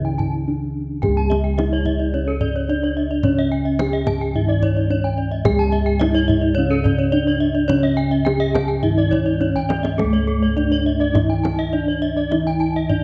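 Dark, warm production with a moderate stage reverb frames this shimmering, brilliant Balinese gamelan excerpt in an uneven-beat four, where ringing bronze metallophones, some mellow and soft under padded disc mallets and others bright under horn mallets, one of them full, with the shimmering beats of paired tuning, carry a melody, a lower accompaniment and two high arpeggio lines over round, beating bossed gongs that sit up front in a boxy small room, while a deep, close and dry kendang played with soft hands runs throughout; a break falls from 0.2 to 1.0 seconds and a drum fill arrives at 9.6 seconds.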